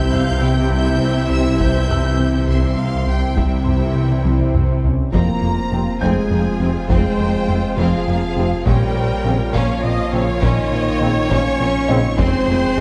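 A focused, vibrato-laden violin section carries the melody high above this tense, futuristic hybrid orchestral and electronic film cue in F minor, moving at 68 BPM in a straight 6/8. A second, more distant violin line, intense, close violas and a smooth cello section fill out the lush bowed strings, while very quiet double basses add a clear, bowed floor. Mellow French horns and a dark, very quiet trombone section hold sustained chords in a classical style, blended with a detuned, chorused analog pad. Underneath, a punchy sine sub bass with a pitch-drop attack reinforces the low end as a round sawtooth analog bass plays a riff, and a felt-muted upright piano adds a soft, intimate texture with audible action noise. A close, dry taiko ensemble struck with heavy sticks plays throughout and adds a fill from 4.3 to 5.1 seconds, leading into a new section that moves through Fmadd9 and Bbm. The moderate scoring-stage reverb and dark, warm production give this excerpt, cut from a longer piece, a brooding depth.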